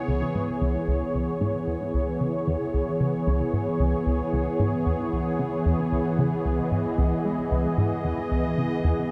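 A bright, airy resonant pad opens this cosmic, mysterious fragment of ambient, sequencer-driven space music, holding detuned, chorused C#m7 chords from 0.0 s to 9.1 s over a straight 113 BPM in 4/4, tuned slightly sharp to A4 = 441 Hz. From 0.1 s a punchy, plucky analog bass plays a funky riff in C# minor, its fast-attack, decaying notes colored by analog delay and a filter sweep throughout. A huge, wet reverb with a 7.9-second tail soaks the mix in a dreamy haze.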